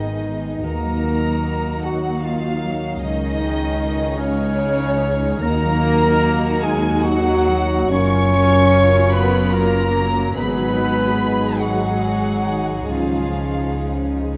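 In a rubato 6/8 lilt, this tender, uplifting cinematic excerpt has a dark, intimate studio violin section carrying the melody sul tasto with light vibrato, while a mellow, hollow silver flute plays a second line in the same register. Beneath them, a background chamber violin section, a vintage-toned clarinet and a woody, lush viola section weave inner lines. Mellow French horns sustain chords, a very quiet harp rings out thumb-plucked arpeggios, and a floating cello section joins an up-front double bass section on the bass, all bathed in a wet concert hall reverb.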